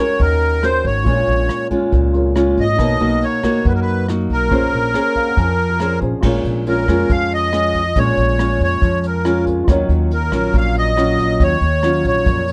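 A dark, lightly reverberant production frames this smooth, wistful bossa nova excerpt in Bb minor at 139 BPM, where a reedy, sweet accordion with light tremolo tuning carries the melody up front over a fingerpicked nylon-string guitar, an intimate baby grand piano with audible action noise that sits in the background and plays a fill from 4.9 to 6.2 seconds, a woody pizzicato upright bass, and a small-room brush drum kit with a punchy kick, rim clicks and a rolled-off top, the bass and drums entering at 0.2 seconds.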